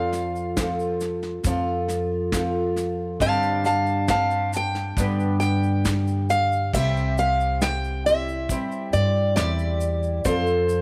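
Pastoral and hopeful, this short cut from a longer acoustic folk piece puts a bright, picked steel-string guitar up front, carrying a solo melody through its first 6.7 seconds before the music moves into a new passage. Beneath it, a dark, boxy twelve-string guitar fingerpicks a shimmering, octave-doubled accompaniment, while a woody pizzicato upright bass holds the low end. A soft brush drum kit with a tight kick and medium-tuned snare, along with a grainy, mellow tube shaker sitting in the background, completes the intimate small-room sound.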